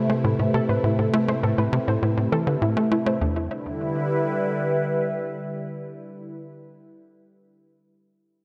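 A straight 4/4 pulse at 101 BPM drives this brief cut from a longer piece of ambient, sequencer-driven space music in E minor, tuned to A4 = 439 Hz, with an expansive, mysterious mood. A tight, punchy sequencer bass carries a driving riff from the opening until 3.5 seconds, its nasal sawtooth and square-wave tone given a fast attack, a decaying filter pluck and a trail of tape echo. Above it, a warbling, lo-fi pluck plays arpeggios from 0.1 to 3.5 seconds, detuned triangle and sawtooth layers with a noise layer and filter sweep, softened by chorus and tape echo. A swirling, evolving analog pad holds sustained chords up front for the full 6.4 seconds, its detuned sawtooth voice swelling in slowly and releasing long through phaser and chorus. The harmony moves from Amadd9 to Em7 at 3.2 seconds, and a moderate plate reverb lends the whole a spacious air.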